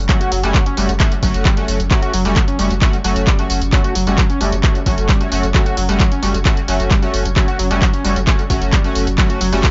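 A dry, punchy electronic kick sits up front in this hypnotic, relentless stretch of driving peak-time techno at 132 BPM, cut from a longer track and held on F# minor in F# Phrygian. A round sine sub bass with overdrive and a low-pass filter pumps beneath, while a gritty, screaming lead with chorus, vibrato and delay carries the riff, and an edgy sync-sweep polysynth adds nasal, lushly chorused stabs; bass, lead and polysynth all pump with sidechain compression. Analog drum-machine handclaps, pumping hi-hat and tambourine fill out the groove, a very quiet swarming, warbling drone hovers underneath, and the mix is nearly reverb-free with a top end capped at 7.6 kHz.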